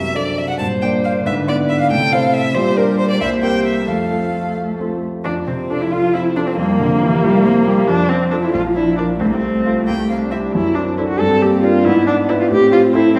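A quick classical-period movement for piano quartet in F major, this cheerful, spirited passage moves at 91 BPM in a straight 6/8, counted in dotted quarters, and is cut from a longer piece. A single bowed violin carries the melody with a rich, smooth, even tone shaded with vibrato, while a close, resonant cello sings a second line beneath it. The concert grand piano supplies accompaniment with natural, deep bass and an up-front presence. The viola joins at 0.6 seconds, its mellow, bowed voice also set forward and shaded with vibrato. After an opening phrase, a new section begins at 5.3 seconds, its harmonies settling onto F and Bb before moving through secondary dominants and minor chords, circling back toward Am at the close. The ensemble sounds heard from further back in a recital hall, with a wet reverb that lingers for about 1.4 seconds.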